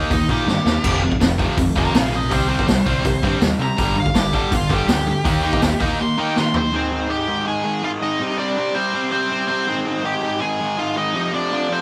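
A band plays live in one small room with light reverb, giving this raw, urgent punk rock excerpt a close, unpolished sound. At 163 BPM in a straight 4/4 in C minor, a crunchy overdriven guitar sits up front with a bright riff, while a tight distorted guitar also plays a riff in the background, and a fuzz-driven picked bass adds punchy, direct grit underneath. A nasal lead guitar with a parked wah, dark and overdriven, carries a solo over the opening, moving through chords such as Eb, F5, C5 and G5. The garage drum kit sounds saturated and gritty, with a punchy kick, a medium-tuned snare, a rolled-off top and short fills. The bass drops out at 5.9 seconds, and the drums and tight guitar stop by 6.7 seconds, leaving the crunchy riff guitar and the wah lead to push through Ab, Cm and F5 until the cut.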